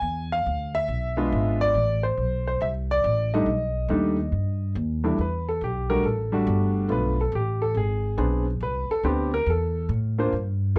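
Through the warble and pitch drift of worn old cassette tape and a small room's moderate reverb, this cool, moody jazz piano trio swings at 140 BPM in E minor, with an intimate concert grand piano carrying the melody over chords such as E7b9 and B7alt, its action noise audible and its deep bass natural, while a woody pizzicato upright bass on steel strings sits up front beside it, and the piano takes a solo from 5.2 seconds until the cut at 10.8 seconds.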